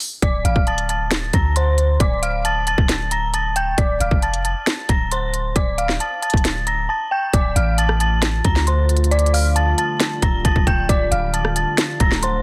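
A trap drum kit opens this hard-hitting, melancholic hip hop excerpt at 135 BPM in a half-time 4/4 feel, with a hard-clipped kick, sharp snare, crisp hats and rim clicks sitting up front with a tape-tinged edge. At 0.2 seconds an eerie, inharmonic FM synth bell arrives in D minor, its detuned tones striking quickly and decaying into a long release through chorus, phaser, low-pass filter and tape echo. Underneath, a deep, boomy warm 808-style bass with a sine core and a noise layer hits with a fast attack and mellow decay, holding the low end alongside the drums. The drums drop out briefly just before the second section begins at 7.3 seconds, where the harmony settles on a D minor chord. From 8.0 seconds a moody, dark ambient pad of detuned sawtooth unison and sub-octave sine slowly fades in beneath the other parts, bathed in chorus and its own reverb. The dense, heavily limited master is otherwise fairly dry and carries a layer of vinyl crackle.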